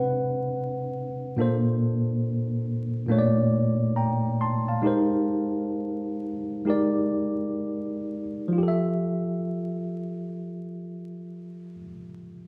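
A worn, slightly out-of-tune tine electric piano, lightly overdriven and sitting up front as if heard through its built-in speakers, carries this smooth, soulful R&B fragment in a swung 4/4, moving through ninth chords from Cmaj9 to Fmaj9 while slowing down between 1.4 and 8.6 seconds, set in a wet large-studio reverb with a live-room feel and a bed of vinyl crackle.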